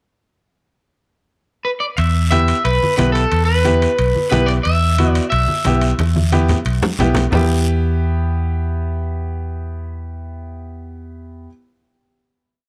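A twangy, slightly broken-up electric guitar with spring reverb opens this passionate, driving cumbia in E minor at 180 BPM, playing a motif-based melody from 1.6 s. At 2.0 s, a dark, round fingered electric bass with a cumbia figure, raspy guiro and ringing metal-shell timbales join in, followed at 2.3 s by low-tuned congas and a brilliant, woody upright piano playing triad chords. Everything is captured up close and detailed until a drum fill leads to the final chord held by bass and piano from 7.3 s.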